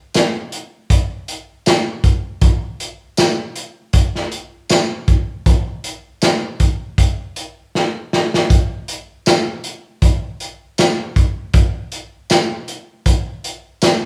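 A crunchy breakbeat drum kit opens this short blues cut and carries it alone, with a punchy kick, a medium-tuned snare, hi-hat and tambourine pacing a gritty, swaggering groove at 79 BPM in 4/4 with a light swing on the sixteenths. The acoustic kit sits up front with a dark, saturated tone and a rolled-off top, while a moderate studio reverb gives the feel of a band playing live in one room. A drum fill at 7.7 seconds breaks up the pattern before the groove rolls on to the cut at 14.0 seconds.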